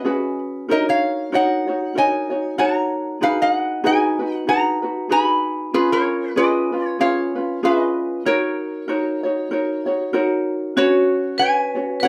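A sunny, languid Hawaiian piece opens at 0.0 seconds with a metal-body resonator slide guitar carrying the melody up front, its nasal, metallic tone picked with fingerpicks. Beneath it, a thumb-plucked ukulele keeps a light, acoustic accompaniment, also close and present, over lightly swung eighths in four. The harmony drifts through C#7sus4, D#m7, G#m7 and C#7 before settling on F#6. At 10.8 seconds the music moves to a new section on Bsus2, where a vibraphone struck with hard mallets, motor off, adds a ringing second line. The parts sit in a fairly wet studio room with a short decay, heard from a little further back, and the passage is cut from a longer piece, ending at 12.1 seconds.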